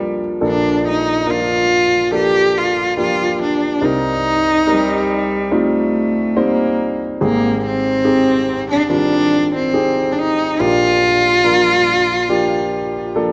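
Heard in the moderate reverb of a scoring stage, this intimate, reflective acoustic folk-pop ballad excerpt puts a close, expressive bowed cello melody up front, colored with vibrato, soft attacks and portamento, over a warm grand piano accompaniment whose natural tone carries audible action noise, while a second cello with a rich, reedy, gut-string, period-style voice plays a supporting line until 7.0 seconds.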